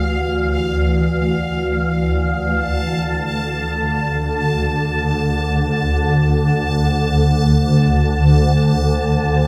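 A swarming drone sits up front in this cavernous, unsettling dark ambient excerpt, its detuned, sine-based unison voices sustaining low and evolving with a tense, granular grain and its own built-in reverb. Above it, a bright, resonant sawtooth texture bubbles through random filter steps, thickened by chorus and its own reverb. At the very start, a very quiet, eerie synth bell adds inharmonic FM tones in arpeggios, each decaying with a long release and a chorused shimmer, and it drops out at 2.6 seconds. The harmony moves from a minor add-nine colour to a bare open fifth at that point, leaving the drone and texture to carry the rest of the excerpt through to 9.5 seconds in free time. A huge ambient reverb with a long tail surrounds the whole recording.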